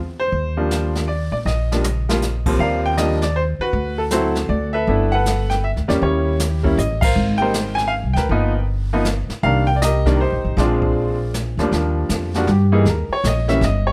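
The recording has a studio sound with a moderate reverb, and the bass and piano sit up front. This is a sophisticated, warm jazz piano trio in a swinging 3/4 feel, cut from a longer piece. A pizzicato upright bass with gut strings gives a thumpy, woody low end, while a bright, brilliant upright piano carries the melody over rich extended harmony. The jazz kit is played with brushes and has a natural small-room character, dark cymbals and a boomy kick, and it adds a fill at 1.5 seconds. The trio hits a band accent at 7.0 seconds, and from 11.7 seconds the piano takes a solo as the chords return to the opening harmony.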